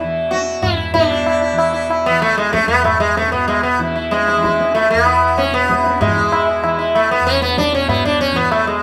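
Hindustani classical music in a radiant, serene mood, this excerpt sets an up-front, buzzing sitar melody with shimmering sympathetic strings over a softly plucked tanpura drone, joined at 0.3 seconds by low-tuned, ringing tabla, all captured live together in one room with a reverberant studio sound.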